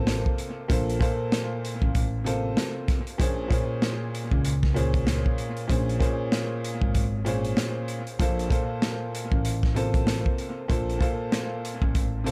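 This moody, reflective boom-bap hip-hop excerpt opens with a clear upright piano and an upright bass together at 0.0 seconds, with a crunchy breakbeat drum kit arriving at 0.1 seconds. It moves at 96 BPM in 4/4 with a 58% swing on the sixteenths, in B-flat minor, drifting from F to Bbm7 at 3.2 seconds and back to F at 8.2 seconds. Up front, the piano carries the accompaniment with a vintage, woody tone and long sustain, coated in dub echo. The pizzicato upright bass sits low with a growly, steel-strung woodiness, while the drums deliver a punchy kick, medium-tuned snare and hi-hat with a saturated, gritty character and a rolled-off top. The small room ambience and echo-heavy mix, touched by a faint mains hum, frame this short cut from a longer piece.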